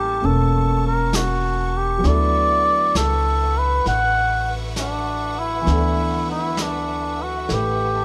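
A cup-muted trumpet sings a veiled, softly vibrato melody over a piano with audible action noise and long sustain, a thumpy, woody gut-string upright bass and a lush bowed string section, with dark, smooth brushes on snare and hi-hat entering at 0.2 seconds in this intimate, tender jazz ballad at 66 BPM in D major, swung and closely recorded in a dry room, moving from A7b9 to Dmaj13.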